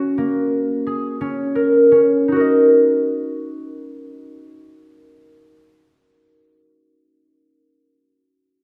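Pensive and hypnotic, this short cut from a longer contemporary instrumental piece in Eb minor and an unusual 11/8 metre features a solo concert harp played up front with mellow, ringing fingerpicked arpeggios between Bb3 and Eb5, easing out of a Bb minor opening that slows down over the first 2.3 seconds before settling onto Eb minor, all in a light reverb.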